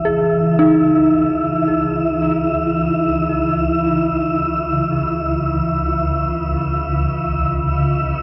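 Unsettling and cavernous, this dark ambient drone drifts in free time around C# minor, heard as a brief portion cut from a longer piece. A swarming, detuned drone sits low beneath everything, its granular, evolving body fading in from the very start and held on a single C# minor chord. Above it, a breathy, wind-like tuned noise texture sits up front, airy yet dark, spreading from the middle register up into the high register. From 0.1 seconds a detuned synth bell traces arpeggios, its inharmonic, full-bodied FM tone made eerie by chorus, tremolo and tape echo. A cathedral reverb with a 6.4-second decay and the warbling pitch drift of worn cassette tape give the whole recording a haunted, decaying sheen.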